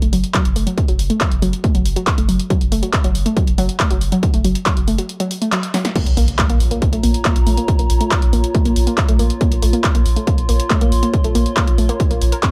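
Set in a digital ambience with a tape-softened, lo-fi character, this intense, hypnotic peak-time techno excerpt drives along at 139 BPM in a straight 4/4 in B-flat harmonic minor. A dusty, warbling, detuned pluck riff with chorus and tape echo plays through the excerpt, while a filter sweep on a synth arpeggio sound runs over the opening six seconds. Beneath it sits a thick, saturated sub bass with overdrive and a low-pass filter, pumping against the kick along with the pluck. A punchy analog drum machine supplies snare, handclaps, hi-hat and crash cymbal, with a short room on the snare, clap and hats, and a heavy, layered electronic kick arrives at 0.3 seconds. A brief break ends in a band accent and a drum fill, then the drop lands at 6.0 seconds on a B-flat minor chord, marked by a very quiet impact. At 6.6 seconds a dark, nostalgic, slow-blooming pad with chorus and its own reverb spreads a vintage haze over the groove.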